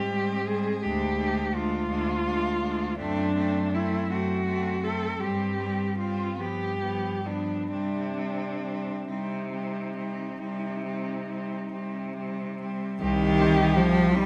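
In a rubato 12/8 lilt, this elegiac, solemn classical fragment for cello ensemble, cut from a longer piece, sets a warm, expressive solo cello melody with vibrato and portamento up front over two rich, smooth cellos carrying a second line and an accompaniment, all anchored by a clear, even bass cello, every part bowed with vibrato and captured by close, detailed microphones in the moderate reverb of a scoring stage as the harmony moves through a Ddim, D7/F# and G7 toward C minor at 7.7 seconds.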